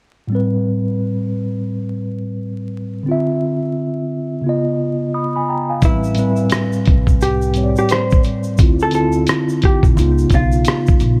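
Lo-fi hip hop at 87 BPM in A minor with a swung, reflective and hazy feel, this excerpt opens on a mellow tine electric piano colored by cassette tape and a low-pass filter over vinyl crackle, cycling through Am9, Dm9 and C#9, before a muffled, pitched-down sampler-style drum kit with a thumpy kick, a woody pizzicato upright bass, a dark, picked hollow-body jazz guitar melody and a grainy tube shaker in the background all enter at 5.8 s.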